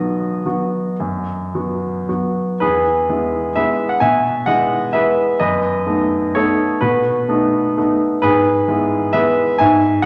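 Bathed in a lush recital-hall reverb, a clear, polished baby grand piano sits up front in this playful, sparkling classical waltz in 3/4, shaping its lines with a supple rubato and moving into a new section at 2.6 seconds in this brief passage cut from a longer piece.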